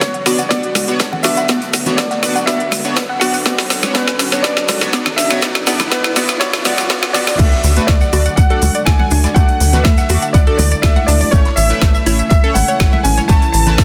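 Driving and dreamy, this progressive house excerpt pairs a clear grand piano melody with an evolving, bright wavetable pad, a round analog pluck arpeggio under a filter sweep, glossy retro polysynth stabs, a punchy up-front electronic kick and a deep house kit with a woody snare, plus a very quiet loose indie kit, a grainy tube shaker, and woodblock and congas, as a drum fill builds from the start and a riser from 0.2 seconds to the drop at 7.4 seconds, where a tight, nasal sequencer bass and a smooth soft supersaw join, all within a lush hall reverb and a dense, heavily limited master.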